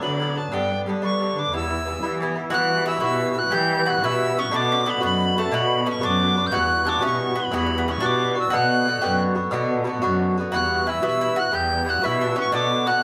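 A bright, airy tin whistle carries the melody up front with vibrato, chiff and crisp tonguing, bathed in plate reverb, in this dark yet spirited Celtic slide in E dorian at 120 BPM in a lively 12/8. A metallic, double-strung Irish bouzouki picks the accompaniment close by while a single bowed cello supplies a shadowy, expressive bass with a soft attack, vibrato and portamento. A round, picked mandolin joins at 2.5 s with a second line, and the whole excerpt sits in a wet studio room heard from further back.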